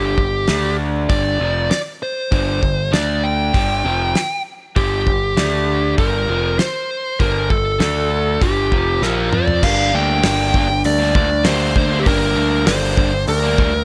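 The sound is dry and close, with little reverb around this gritty, driving classic rock excerpt in a straight 4/4. A distorted fuzz lead guitar sits up front with the melody, its picked notes carrying a slapback echo. Beneath it, a crunchy, double-tracked overdriven guitar plays the riff, while a growling picked electric bass, bright and overdriven, sits forward in the mix. A damped 70s acoustic kit with a fat snare, tight kick and rolled-off top drives the groove on crash, hi-hat, kick, snare and toms. A drum fill at 9.0 seconds leads into a new section at 9.6 seconds, where a dark, mellow baby grand piano with short sustain enters very quietly as accompaniment.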